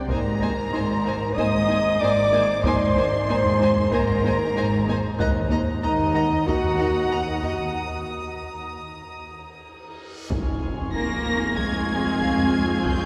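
Drenched in a long cathedral-like reverb, this tense, eerie suspense cue moves at 94 BPM in 4/4, with an expressive violin section using portamento carrying the melody over a lush second violin line, a woody viola section, expressive cellos with portamento and a distant double bass section, set against a very quiet ethereal pad, a faint ringing harp and a background taiko ensemble. A roomy solo clarinet adds a second line in the opening stretch, a close, dark violin texture enters at 5.2 seconds, and a break at 7.8 seconds brings a cymbal swell and tam-tam. A reverse cymbal leads into a huge impact and a band accent at 10.3 seconds as the harmony arrives on Fm.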